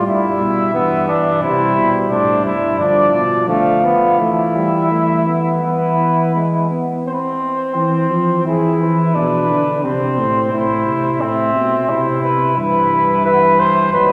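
A wet church reverb with a long 3.2-second decay surrounds this short cut from a longer classical canzona for brass ensemble, giving it a roomy, resonant sound. The mood is stately and joyful, moving at 87 BPM in a straight 4/4, with the instruments tuned to A4 = 441 Hz. A dark cornet carries the melody from a distance with light vibrato. Just beneath it, an up-front flugelhorn sings the second line with a soft attack and warm tone, while a mellow tuba anchors the bass with its own light vibrato. A trombone with a smooth top plays accompaniment, dropping out at 7.0 seconds and returning at 12.6 seconds. The harmony moves from Em/G through C, Bdim and Esus4 to E, then Cadd11, E and Am before settling back on Em/G.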